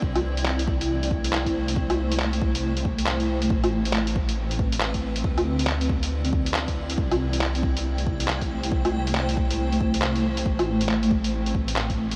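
A blurred, evolving granular pad opens this wistful, nocturnal future garage excerpt at 138 BPM, carrying C6, Am9 and D9sus4 chords with sidechain pumping. Alongside it are a dark, rumbling detuned saw bass, also pumping, and a deep, layered electronic kick. At 0.2 seconds a muffled, pitched-down sampler-style kit joins up front with handclaps, hi-hat and woodblock, its 16ths swung at 62%, sharing a tape-warm tone and small room ambience with the kick. The mix is soaked in a huge, dreamy reverb with vinyl crackle, and the pad adds its own built-in reverb.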